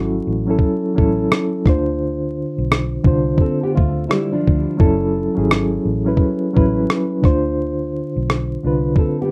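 Melancholic and hazy, this lo-fi hip hop fragment at 86 BPM with a swung 16th feel sets a reedy, mellow electric piano up front, shimmering with fast tremolo, cassette tape color and a low-pass filter, over a round, foam-muted electric bass and a gritty, compressed sampler-style drum kit of thumpy kick and rim click that enters at 0.6 s, while a dark, full-bodied nylon-string guitar with tape echo appears briefly at 3.4 s and returns at 9.0 s, set in light reverb, vinyl crackle and a rough home-demo mix as the harmony alternates between F#m7 and Dm7.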